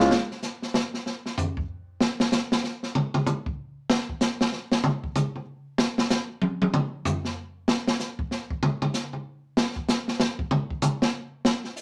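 Jazz drum solo in a swinging 3/4, searching and spiritual in mood, cut from a longer piece. An open acoustic kit plays alone from 0.1 to 11.8 seconds, moving across hi-hat, snare, toms and kick, with a medium-tuned snare and a boomy kick sitting up front. The sound is airy and polished, set in a small room with a wet, short reverb.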